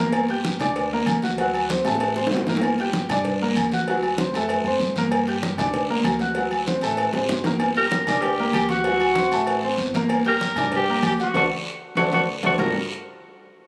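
Danceable and fiery, this salsa excerpt, cut from a longer piece, moves in a straight four over a G minor vamp alternating with D7, landing on Gm9 at the end. A brilliant grand piano sits up front with the accompaniment, while a woody, thumpy upright bass played pizzicato on gut strings anchors the low end. The percussion is busy and layered: ringing metal-shell agogo bells and timbales, low-tuned congas struck with hard hands, tight high-tuned cowbell and bongos, and a raspy guiro, with the congas and cowbell pairing set further back. Drum fills break up the groove, and the band hits a shared accent from 11.3 seconds. At 7.8 seconds a clear, vintage-toned tenor saxophone enters up front for a pop-style solo, scooping into its notes with a slapback echo. The whole sounds captured on a phone in the room, with club reverb, light reverb and compression.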